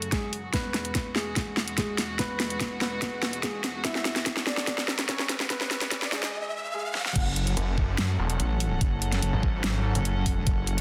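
A half-time pulse at 145 BPM in 4/4 drives this heavy, chaotic wobble dubstep fragment in F# minor, cut from a longer piece. A dark, deep-voiced concert grand piano carries the melody through digital delay until 7.0 seconds, while a distant chamber string section with gut-string tone and light vibrato bows sustained chords under sidechain pumping. The dubstep drum kit, with a huge overdriven snare, hi-hat and crash cymbal, sits up front alongside a knocking, tape-tinged electronic kick, playing fills through the build-up as a riser climbs in the background from 3.5 seconds. The drop lands at 7.2 seconds on F# minor, where a saturated, detuned wobble bass with chorus takes over the low end. A snarling, growling saw bass with a resonant moving notch and distortion joins it briefly, all under light reverb and a dense, heavily limited modern master.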